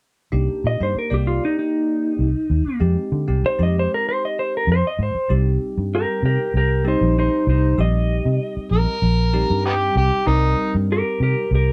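Light reverb places this brooding blues in a single room where the band plays live, heard as a fragment cut from a longer piece. At 97 BPM in a straight 4/4 and in C minor, the mood is mournful as the harmony moves from Cm7 to Fm7 before settling on Cm. A bell-like, bright tine electric piano with phaser sits low in the mix, while a vintage muted fingered bass gives a round, foam-muted, amped tone up front. The clean lap steel carries the melody from 0.7 s, dark and compressed, played with fingerpicks, slide and volume swells. At 8.7 s an overdriven harmonica enters as a second line, gritty and amplified, with light vibrato, tongue slaps and scooped notes in a jazz-style solo.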